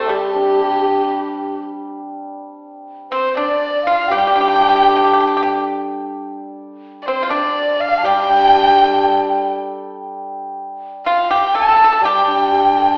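A dark-toned erhu carries the melody up front, its soft attack, light vibrato, portamento and airy bow giving a single player a close, intimate voice. This is graceful, festive Chinese traditional music for a chamber ensemble, cut from a longer piece and moving in a free, rubato 2/4. A bamboo xiao sits in the background with a breathy, tongued second line, marked by vibrato and a slightly unsteady quality. A dry, percussive pipa played with fingerpicks adds another second line, while a hammered dulcimer, also placed up front, fills out the accompaniment with a shimmering, ringing sound. All four parts play throughout, with a brief opening giving way to a new section at 2.1 seconds, and the ensemble sounds as if heard in a reverberant recital hall through an AM radio.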